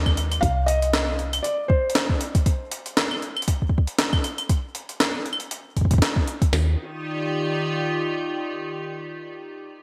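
IDM at 118 BPM in Eb major with a 16th-note swing, this glitchy, intricate fragment opens with a mellow, felt-muted upright piano melody through digital delay over a woody FM bass on Cm, while a clicky electronic kit with a tiny snare and a gritty, overdriven, pitched-up jungle sampler kit, both in gated reverb, run until about 6.7 seconds, before an icy, crystalline glass pad with chorus enters on Ebmaj7 at 6.9 seconds in a lush hall and bright 1980s-style digital production.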